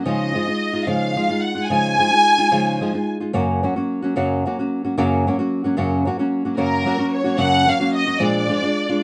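A lush, bowed violin section with warm vibrato carries the melody from 0.1 to 3.1 s and again from 6.6 s, over a bright, fingerpicked nylon-string guitar accompaniment in this festive, proud mariachi excerpt in F# major, moving at 74 BPM in 6/8 through a small, moderate room ambience as the harmony shifts from C#add9 to F# and finally A#7.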